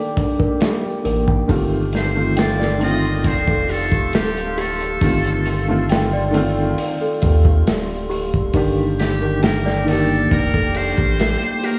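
A buzzy muted trumpet carries the melody from 2.0 s in this dark, melancholic trip hop excerpt at 68 BPM, set over a crunchy, gritty breakbeat kit, round sub bass, worn upright piano with tremolo and tape echo, bell-like celesta arpeggios, a moody analog pad, and faint egg shaker and triangle, all soaked in cathedral reverb as the chords move from Ebmaj7 to F7 and back.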